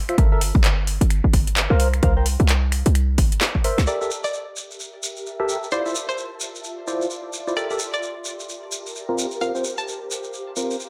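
A bouncy, late-night two-step garage groove with a swung shuffle, cut from a longer piece. A hollow, nasal organ stab with chorus and tape echo runs throughout, outlining jazzy minor-ninth and suspended chords. In the opening bars a layered garage kit of finger snaps, handclaps, a woody filtered snare and metallic filtered hats sits with a punchy overdriven kick and a tight, up-front 808-style bass, closing on a drum fill that ends at 3.9 seconds. From there the kit, kick and bass drop away, and a twangy, vintage resonator pluck carries the melody through chorus, phaser and tape echo, while a grainy acoustic shekere keeps the pulse. At 4.7 seconds an ethereal, airy pad fades in with ensemble chorus and sidechain pumping, and the whole passage sits in a light reverb.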